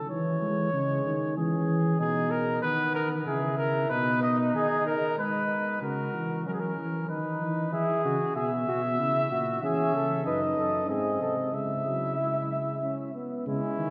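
Elegant and lively, this classical brass canzona in C# minor moves at 94 BPM in a straight 3/4, its imitative writing heard in a passage cut from a longer piece. A mellow trumpet carries the melody up front, its light vibrato sounding distant and roomy, while a tuba anchors the bass with a mellow, forward presence. At 2.0 seconds a flugelhorn enters with a second line, its vibrato giving it a singing quality in the same spacious distance, just as the trombone's opening accompaniment drops away. The trombone, smooth-topped with a light vibrato, returns at 9.6 seconds to fill out the ensemble for the closing bars. A new section begins at 5.8 seconds, and the harmony travels from C# minor through F#, B and E and diminished passing chords before settling back on C# minor. The whole ensemble sits in a wet church reverb whose long tail lends the brass a resonant, cathedral-like glow.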